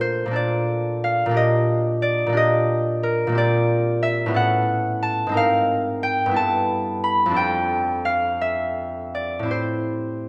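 A solo concert harp opens this gentle, wistful classical excerpt, its fingerpicked tones ringing out on a Bbmaj7 chord. The tempo sits around 54-61 BPM in dotted quarters, in a 6/8 metre that breathes freely with rubato. The harmony moves through Ebmaj7/Bb and Bb69, then a chain of sixth-nine chords from A69 at 4.4 s through G#69 and G69 to F69, before settling on Am7 at 9.5 s. The harp spans a range from F2 to B5 and sits up front, its acoustic sound warm. A moderate recital hall reverb lets each note bloom gracefully into the space across the full 10.3 seconds.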